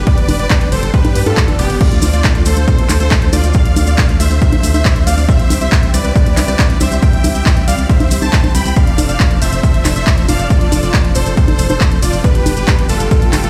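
Uplifting trance at 138 BPM in D dorian, euphoric and driving, cut from a longer piece, with huge detuned supersaw chords carrying the melody through digital delay while a catchy plucky unison lead adds a second line through tape echo and a lush, airy pad holds sustained chords under chorus, all three pumping against the sidechain along with a round, dark FM bass. An overdriven, layered kick sits up front beside a dry analog drum machine playing congas, crash cymbal, handclaps and hi-hat, a very quiet electronic swell sounds at 1.1 seconds, and grainy, mellow maracas join at 1.8 seconds as the chords move from G through Dm7, C and F6 back to G. The mix carries little reverb beyond the sense of a big sound system in a bare stone room.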